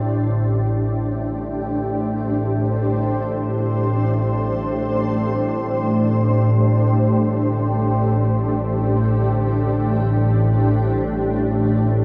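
A huge, dark wash of reverb surrounds this desolate, ominous dark ambient drone fragment in free time, where a warbling organ-like drone with ensemble chorus sits up front beside a blurred, granular cloud pad holding sustained chords, while an eerie, inharmonic synth bell traces faint arpeggios until 3.7 seconds and a filter sweep moves across the drone throughout.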